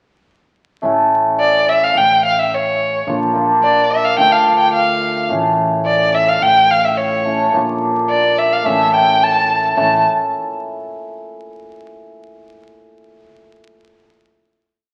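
Klezmer in A phrygian dominant at 107 BPM in 2/4, festive and soulful: a shimmering hammered dulcimer plays off-beat triad chords and a woody pizzicato upright bass plays root and fifth on the main beats from 0.8 seconds, while a rich, vibrato-laden bowed violin enters up front at 1.4 seconds with an ornamented modal melody over a progression moving from A through Bb and Dm back to A, all bathed in a large studio reverb and the crackle of a very old 78 rpm record.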